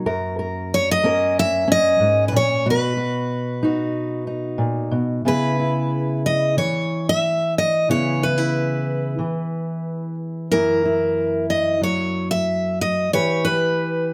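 Close, detailed microphones and a light reverb give this short folk excerpt an intimate, clear sound. At a straight 92 BPM in 4/4, a fingerpicked steel-string acoustic guitar opens at 0.0 seconds with a dark, woody accompaniment, its old strings lending a worn character as it ranges from F#2 up to B4. At 0.7 seconds a picked steel-string guitar joins on the melody, bright and full-bodied, sitting up front and slightly louder while it stays between A#4 and E5. The harmony moves from F# to Bmaj7, then settles on C#m7 when a new section begins at 5.3 seconds, later passing through F#7 and arriving on Em near the close. The mood is hopeful and tender, the two guitars together creating a gentle, personal feel.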